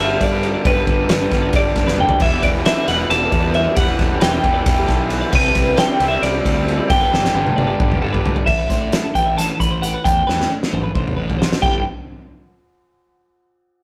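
Math rock and midwest emo in a bright, playful 7/8 at 268 BPM in G major, moving through chords like Gadd9, Em11, Cmaj13 and Am9, where a twangy, compressed twelve-string electric guitar carries the melody over a second twelve-string's background arpeggios, a double-tracked overdriven garage guitar riff until 8.5 seconds, a fuzzed fingered bass, and an up-front loose indie kit with a fat snare, boomy kick and dark cymbals throwing in fills, before a clean, warm electric guitar takes over the accompaniment from 8.5 seconds on, all captured in a rough rehearsal-room recording with tube saturation and moderate reverb.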